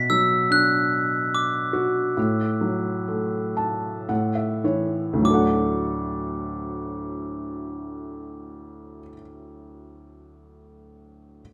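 A glockenspiel struck with brass mallets and a felt-muted upright piano begin together in this tender, gentle lullaby, a short cut from a longer piece in D major with a lilting 3/4 metre and a free, rubato feel between 48 and 74 BPM. The glockenspiel carries the melody high in its range, its tone bell-like and ringing yet dark and smooth, while the piano sits up front with a soft, mellow, intimate sound, thin felt, a vintage character and audible action noise. The opening stretch slows down through its first 5.3 seconds, and a felt piano fill arrives at 3.1 seconds, as the harmony moves from B minor through D over A to A before settling on D as a new section begins. The glockenspiel falls silent at 9.1 seconds, and the muted piano carries on until 11.4 seconds. A moderate recital hall reverb gives both instruments a gentle sense of space.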